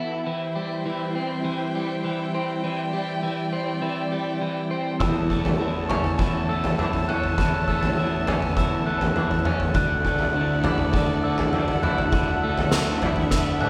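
Brooding and melancholic, this post-rock passage at 101 BPM opens on clean, compressed twelve-string electric guitar arpeggios shimmering with harmonic tremolo over rich, bowed chamber strings, then at 5.0 s a saturated, oversized low-tuned drum kit with punchy kick and fat snare arrives up front alongside dark, overdriven fingered fuzz bass and soft, bell-like glockenspiel played with rubber mallets, the harmony moving from C/E through A/E to Dadd9 in the long reverb of a church or concert hall before a drum fill at 13.3 s.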